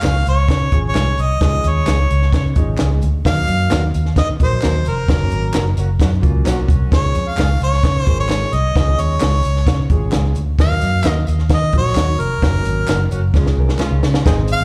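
A smooth-topped harmonica carries the melody in this joyful, uplifting, uptempo 1960s-style soul passage, its jazz-style solo line full of vibrato and scooped notes and trailed by slapback and tape echo. Underneath, a foam-muted electric bass sits up front with a dark, round, punchy tone, while a compact cocktail kit keeps a dry, natural beat with a high-tuned snare, tight kick and hi-hat, joined by very quiet handclaps and egg shaker. A woody, polished upright piano fills out the accompaniment with tube saturation and slapback echo, and a bright, clean, compressed guitar adds chorused stabs from the background. A tight horn section with light vibrato enters at 5.8 seconds with a second line during a band accent, then returns at 13.1 seconds just ahead of a drum fill. The whole excerpt sounds like a live club gig heard through the venue's PA, with small-room ambience and club reverb around the band.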